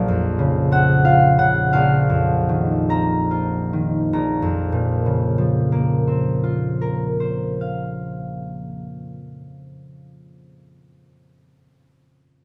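A ringing, fingerpicked concert harp sits up front in this mysterious, wistful solo classical piece in a rubato 3/4, spanning Bb1 to Bb5 as it slows down through its opening 4.1 seconds, moving from Bbmadd9 to F7sus4/Bb and back to Bbmadd9 at 4.1 seconds, captured by close, detailed microphones in a moderate recital-hall reverb, in a brief passage cut from a longer work.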